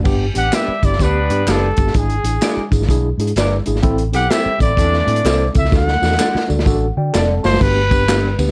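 A swung 127 BPM 4/4 groove from a crunchy, saturated breakbeat kit and a round, foam-muted fingered bass drives this warm, danceable excerpt of uptempo 1960s-style soul in G major, where a breathy, whispered trumpet carries the melody over a mellow horn section, a tine electric piano, lo-fi guitar stabs with analog chorus, and tambourine and handclaps, with a drum fill from 5.7 seconds, joined by an electric piano fill at 6.2, leading back to G at 7.6 seconds in a dark, dry production.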